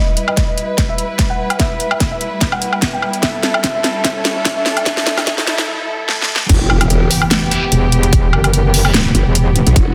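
A dense, heavily limited mix sits in a lush hall ambience for this aggressive, heavy wobble dubstep fragment in E harmonic minor, pulsing at 147 BPM in a swung half-time feel. A soft, thick-felt upright piano with tape echo carries the melody over con sordino strings pumping their sustained chords. Meanwhile, punchy overdriven kicks, a huge snare, metallic hats and woodblock drive a build-up with fills, a filter sweep and a very quiet riser. After a brief break, the drop lands at 6.5 seconds with a growling, formant-filtered bass, joined first by faint, bright double-tracked guitar stabs and then by a metallic FM wobble bass.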